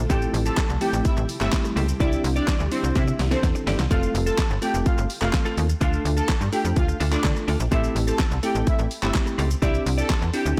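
A very quiet, ethereal pad and a clean, direct-recorded electric guitar riff with subtle chorus open this carefree, summery dance-pop excerpt in F major at 126 BPM, joined at once by a snappy, metallic FM slap bass, a smooth supersaw melody with dub echo, a bell-like tine electric piano and a punchy, layered pop kit of kick, fat snare, hi-hat, shaker and handclaps, with the bass, supersaw and electric piano all pumping to the sidechain. The pad drops out at 3.9 seconds, just after a drum fill, as the chords move from Am7 and Cadd9 to F and Dm. The bass and drums sit up front in a light digital ambience, and the whole mix is blown-out and overdriven.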